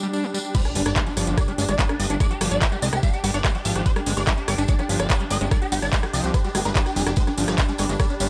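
A short cut of alien, psychedelic trance with light digital ambience, opening on a very quiet electronic swell that gives way to an impact as the drop lands at 0.5 s, where a knocking, tape-warm electronic kick sits up front beside a drum kit of metallic hats, handclaps, rim clicks and crash, all re-recorded in a small room. A fat, detuned sawtooth analog bass joins at 0.8 s under a swarming, aggressive rave lead with a pitch-rise attack, chorus, phaser and dub echo, while a squelchy, screaming distorted acid riff with resonant filter sweeps churns in the background. An evolving, morphing wavetable pad, a soft, breathy pad with a noise layer and a jingly acoustic tambourine fill out the backdrop, with sidechain pumping on the pads, acid line and lead.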